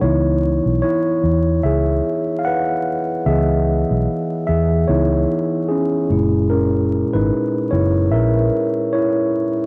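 A 74 BPM swing in 4/4 carries this hazy, nostalgic lo-fi hip hop fragment in C# dorian, where a mellow, up-front tine electric piano with a cassette-tape tint takes the lead over a C#m7 that moves to F#7 at 6.1 seconds, while a dark, round, foam-muted fingered electric bass with tube saturation underpins it until 8.5 seconds, all wrapped in light digital reverb and a home cassette recording touched with vinyl crackle.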